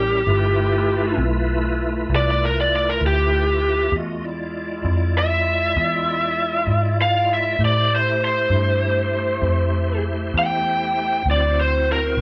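The overdriven lead guitar, picked and lo-fi through a small cranked amp, solos up front over a reedy tonewheel organ with key click, slow rotary speaker and chorus vibrato, and a round, punchy, foam-muted fingered bass in this gritty, rollicking slow blues at 66 BPM in 12/8, cut from a longer piece and played live in one room with light reverb as the chords move from G13 through E7b9 and Am7 to D9.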